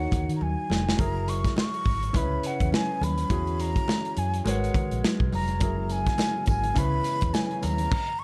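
Light studio reverb gives this short cut from a longer piece a polished, roomy sheen, setting a silky, bittersweet mood in lush 1970s-style soul with a gentle swung sixteenth-note feel. A breathy concert flute carries the melody with expressive vibrato, tongued notes and lifted highs, floating over a warm, natural concert grand piano whose deep bass fills out the harmony beneath chords such as F#9 and C#m7. A dark, round, foam-muted electric bass with an amped, vintage tone anchors the low end. Up front, a modern acoustic drum kit with a punchy kick, medium-tuned snare, hi-hat and crash sits in a pumping studio room and opens with a fill from 0.4 to 1.0 seconds, while very quiet, ringing congas add a soft acoustic layer. At 5.6 seconds a smooth, clean tonewheel organ slips into the background with sustained chords, key click, chorus vibrato and a slow rotary speaker, joined by a very quiet, jingly, bright tambourine.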